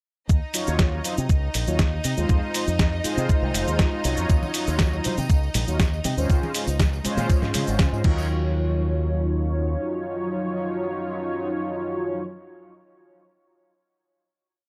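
A short, groovy, cosmic nu-disco piece in Eb dorian at 120 BPM opens at 0.3 seconds with a thumpy, tape-warm four-on-the-floor electronic kick, a gritty, compressed sampler-style kit with a disco backbeat, a bright, punchy envelope-filtered fingered bass, and clear bowed strings holding sustained chords with sidechain pumping. Round, detuned synth brass enters at 0.5 seconds, stabbing syncopated chords through chorus, cassette tape and tape echo. Tambourine and congas join in the background at 4.3 seconds, before the brass and bass ring out on a final hit from 8.3 seconds.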